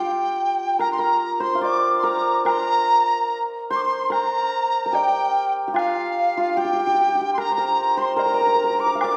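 The rhythm moves freely in a rubato 4/4 around 73 BPM, giving this wistful, tender piece of Chinese traditional chamber music a loose, breathing pulse. A large dizi carries the melody up front with a mellow, pure tone, its buzzing membrane, vibrato and tongued notes softened by rolled-off highs. Behind it, an airy, reedy xiao plays a second line in the same register, end-blown and tongued with vibrato, its sound set further into the background. A hammered dulcimer adds another close-up second line lower down, its shimmering, ringing strikes filling out the texture from the opening. From 0.8 seconds a very quiet woodblock taps out a close and dry percussion part, while a recital hall's reverb places the ensemble some distance back in a resonant room across this 9.2-second fragment of a longer work.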